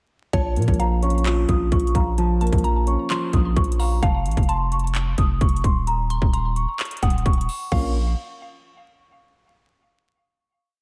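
Trap hip hop at 130 BPM in a half-time 4/4 feel, menacing and brooding in Bb harmonic minor, where a bell-like large celesta loops a sweet, delicate melody through lush chorus, low-pass filtering and delay, a woody, round FM synth pluck adds a sparse counter-melody with phaser and delay, a dark concert grand piano plays a pedal-note arpeggio in eighths until 4.0 s and returns briefly at 7.7 s, and an up-front trap kit with a hard-clipped kick, metallic hats and fast hi-hat rolls is joined by long, deep 808 sub-bass notes that follow the kick with pitch slides and ring to 8.1 s, all under light reverb and vinyl crackle as the Bbm, F and Eb5 chords resolve to a final Bbm.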